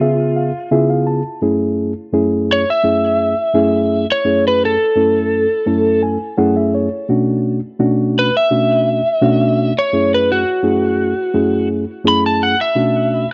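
A mellow, reedy electric piano heard through its built-in speakers opens with a short fill over a C#7#9 chord alongside a dark, slightly broken-up electric slide guitar, played with fingerpicks and compressed, which takes an up-front solo from 1.4 seconds over F#m7 and Bm7 changes in this brooding, smoky 85 BPM blues in F# minor, cut from a longer piece and captured as a close, dry 1970s-style studio recording with digital ambience.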